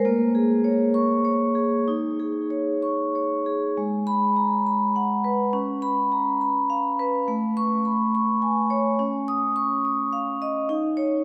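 Contemporary classical music for solo vibraphone, reflective and hypnotic in a rubato 6/8, where medium hard mallets with the motor off draw dark, metallic, ringing tones that sit up front and smooth as chords such as A#m7, G#m9 and Amaj7 unfold in a vast, echoing cathedral space, the passage moving into new material at 3.8 seconds in what is cut from a longer piece.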